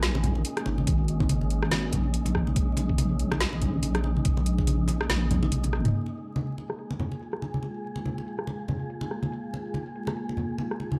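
Deep dubstep at 142 BPM in Bb minor, brooding and cavernous, with a half-time swung feel and a dry, gritty sound under light reverb and vinyl crackle in this short cut from a longer piece. A sustained, warbling sawtooth pad with chorus sits in the background alongside an airy, wind-like tuned noise layer, while an up-front, triangle-and-sine wobble bass holds low until 5.9 s. A layered garage kit with woody snare and metallic, filtered hats plays throughout with thick-skinned, low-tuned congas, joined from 0.9 to 4.7 s by a thumpy, pitched-down kick before a drum fill at 5.3 s leads into the second section on a Bb5 chord.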